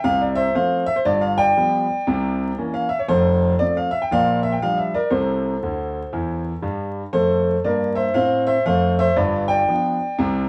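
A small room's moderate reverb and a layer of vinyl crackle frame this short cut from a longer stride piano performance, captured as if played live in one room. A clear concert grand piano carries the whole thing alone, sounding intimate and up front, with audible action noise, a deep bass, a boxy character and long sustain. The mood is swinging and playful, moving at 118 BPM in 4/4 with a swung eighth-note feel in F major, the instrument tuned a touch sharp to A4 = 444 Hz. The harmony travels from F through G7 and C7b9 back to F, then on to Bb6, Amadd11/C and C before landing on F again and turning toward G7 near the end. A piano fill between 5.6 and 7.1 seconds stands out, while the part ranges from F1 up to G5 across the 10.5 seconds.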